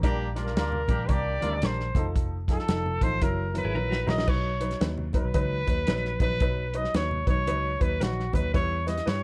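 A brief, clear horn section opens alongside woody, slightly detuned upright piano, round foam-muted picked electric bass, a dry soul drum kit with dark cymbals and very quiet low-tuned congas in this danceable, swung, 1960s-style uptempo soul excerpt, while a mellow, distant trumpet carries the jazz-style melody with vibrato from 0.4 s, a compressed clean electric guitar riff with tremolo sits in the background from 3.6 s, and a drum fill leads into a key change at 4.3 s.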